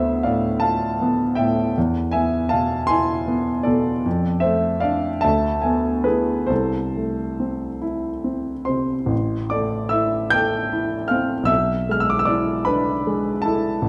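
A romantic classical nocturne for solo piano, this short excerpt from a longer piece unfolds in A minor at a slow 44-55 BPM in 6/8, its pulse stretched by rubato. The mood is mournful and yearning, carried by a clear, intimate grand piano that sits up front and spans from A1 up to G6, with the natural sound of its action audible beneath the notes. The harmony opens on Bm7b5/D before moving through E, Dm/F, E7/D and Am/C, then settles on Am at 9.1 seconds as the opening idea returns, closing on E7/B. A recital hall reverb with a 1.4-second decay surrounds the instrument, lending it a resonant, lingering halo. The overall production leans dark and warm, suiting the melancholy character of the music.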